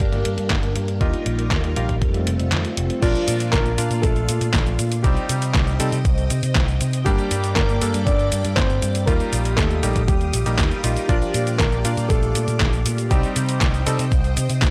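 Italo disco at 119 BPM in Bb major, sunny and romantic, where a lush string machine with phaser and ensemble chorus holds sustained chords over a picked electric bass with an envelope filter, a thumpy overdriven electronic kick and a detuned 8-bit drum machine with snare, handclaps, hi-hat, cabasa and crash, while a bright, clangy electric grand piano plays stabs and, after the kick drops out briefly at 2.5 seconds, a boxy concert grand piano with tape echo carries the melody from 3.0 seconds in a dry, gritty recording.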